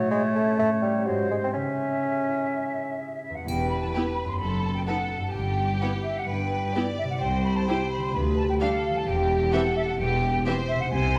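Magical and mischievous, this whimsical, playful film cue is cut from a longer piece and moves in a straight, even four. It opens with up-front woodwinds: a bright clarinet and a warm bassoon in classical style, both of which drop out by 3.2 seconds, over a small, pure-toned flute group heard at a distance and a concert harp ringing with thumb-plucked arpeggios. At 3.5 seconds the harmony shifts and the strings enter, with a rich violin section carrying the vibrato-laden melody above a lush cello section and a smooth double bass section. A clear second violin line sits in the background, and a close, even viola section fills the middle, while a triangle adds a brief glint just under a second long. Both the flutes and the harp continue to the close, and the whole cue is bathed in a wet scoring-stage reverb.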